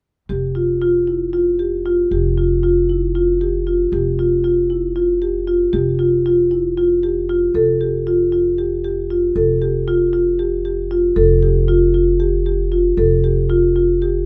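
This contemporary chamber piece in 7/8 moves at 232 BPM counted in eighths, with a straight, shimmering and playful feel in F major, tuned to A4 = 442 Hz. A marimba played with medium mallets carries arpeggios across a narrow span from E4 to A4, its rosewood bars giving a woody, vintage tone with a band-limited edge, placed up front in the mix. Beneath it, an upright bass holds a low F1 with pizzicato gut strings, sounding dark and thumpy, and also close up front though quieter than the marimba. Both parts enter at 0.3 s over an Fsus2 chord, and the music shifts into a second section at 7.5 s. The dry room leaves the two acoustic instruments clear and intimate, and this short cut from a longer piece closes with the bass sounding until 14.3 s.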